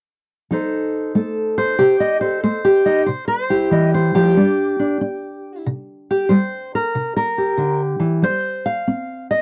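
Laid-back and gritty, this short cut from a longer acoustic country blues piece rolls along in a swung 4/4 feel on a lone fingerpicked steel-string acoustic guitar. The guitar sits up front with a dark tone and audible finger squeak, ranging from low bass notes to high trebles and moving through F7, C and G5 before settling into a solo passage from 5.7 seconds over C7 and F5 chords. The close, dry sound carries a 1970s studio character, with only light reverb around the instrument.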